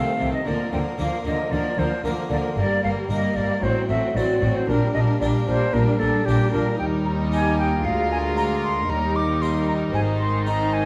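An airy, close-miked concert flute leads this festive, brilliant baroque-style concerto movement, carrying the melody with expressive vibrato over a chamber violin section that also plays a melodic line distantly in the background while a second violin line sings closer and more expressively. A full, plucked harpsichord and a portamento-tinged viola section fill in the accompaniment, and from 0.2 seconds a focused cello section and an intense, lush double bass section anchor the bass beneath harmonies that settle from G minor toward E-flat. The sound is dark and wet, set in a recital hall with faint vinyl crackle, and the passage is cut from a longer piece.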